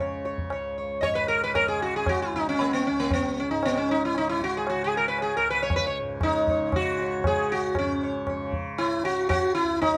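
Recorded live in one room with a moderate studio ambience, this solemn, longing Hindustani classical excerpt in C# raga Bhimpalasi moves at 116 BPM in a straight 4/4. An up-front, bright sitar carries the melody with a buzzing, round, plectrum-plucked tone alive with sympathetic strings, while a softly plucked tanpura sustains a shimmering low drone beneath it. A high-tuned tabla, close and dry with a short ring, enters at 0.3 seconds, and the music moves into a new section at 7.8 seconds before the cut.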